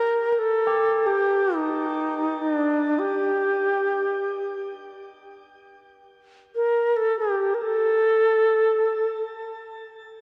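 A reedy, airy bamboo xiao opens this haunting excerpt of meditative world music up front with a shimmer reverb and diffuse ambient delay, joined at 0.7 s by solemn, metallic tubular bells ringing in the background through their own shimmer reverb until 8.2 s, all set in a wet concert hall and colored by the warbly pitch drift of worn old cassette tape.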